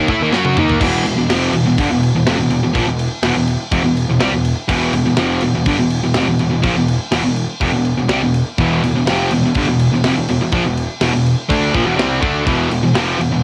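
A lo-fi home cassette recording with light reverb opens this aggressive, heavy metal excerpt at 124 BPM in straight 4/4, cut from a longer piece. An up-front overdriven guitar carries the riff, with a quieter compressed distorted guitar beside it and a double-tracked fuzz guitar that sounds briefly at the start and returns at 8.6 seconds, while a growly, overdriven picked bass sits in the background. A tight acoustic kit with bright cymbals and a medium-tuned snare plays a drum fill from 0.3 to 0.8 seconds, as the harmony moves from D#5 to E minor.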